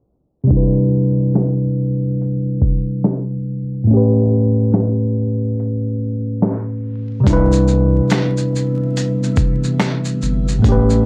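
A worn, slightly out-of-tune tine electric piano sits up front in this mellow, nostalgic lo-fi hip hop excerpt, moving from Cmaj7 to A7 over a swung, gritty, overdriven sampler-style drum kit of thumpy kick, snare, hi-hat, shaker and finger snaps. A filter sweep runs through the opening, and the kick drops out from 3.9 to 7.3 seconds. At 7.3 seconds a deep, saturated sub bass enters alongside a dark, vintage string-machine cello pad with phaser and ensemble chorus sitting in the background, all heard through vinyl crackle and a small, dry room.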